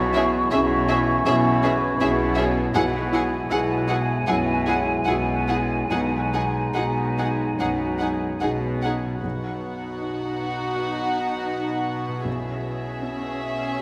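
In a moderate scoring-stage reverb, this cinematic excerpt in B major drifts at a rubato 70-81 BPM with a moving, hopeful mood: sul tasto violins carry a pure, floating melody above a second violin line, dark woody violas, a close cello section holding the bass with distant double basses, a felt-muted upright piano whose action noise sits in the background, and a bright concert harp's very quiet ringing arpeggios, while a hollow silver flute, a clear clarinet and a mellow French horn section's sustained chords drop out at 8.9 s, the double basses following at 9.2 s.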